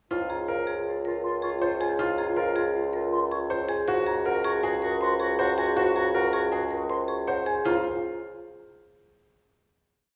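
A woody, hard-mallet marimba carries the melody in this short, bright and propulsive minimalist classical piece at 159 BPM in 5/4 and D-flat major, its repeated short cell ringing close and dry above a clear, natural concert grand piano and a pure, hollow flute with vibrato, both cycling their own arpeggiated cells. A punchy clarinet adds a second line of pulsing notes that swell and fade, while a warm bassoon holds long D-flat bass notes with light vibrato. The harmony moves from Db6 to Gbadd9/Db at 3.9 seconds and returns to Db6 at 7.7 seconds for a final chord lingering in a wet recital-hall reverb.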